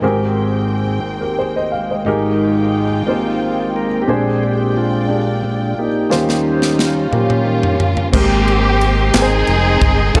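A tonewheel organ with audible key click and a slow rotary speaker leads this uplifting, hopeful slow gospel piece in 6/8 at 59 BPM in Ab major, soloing over a woody, slightly detuned upright piano and lush bowed string chords in a dark production with moderate reverb, before a crisp fusion drum kit with punchy kick and dark cymbals enters with a fill at 6.1 s, an expressive string section melody with vibrato and portamento arrives at 7.1 s, and a round, punchy fingered electric bass joins at 8.1 s, followed by a brief burst of handclaps in the background at 9.1 s.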